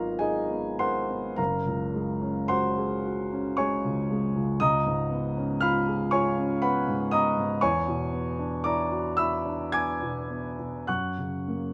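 A lone concert grand piano opens on a dreamy Abm11 chord, drifting in a rubato 3/4 at roughly 49-60 BPM in a serene, impressionist classical style. At 1.4 seconds the harmony settles onto Gbadd9, then glides through Db9 and E9 before coming to rest on Gb near 10.9 seconds, spanning from Gb1 to G#6 with deep bass and long sustain. The warm instrument sits up front, captured by close, detailed microphones with light reverb, in this brief fragment of a longer piece.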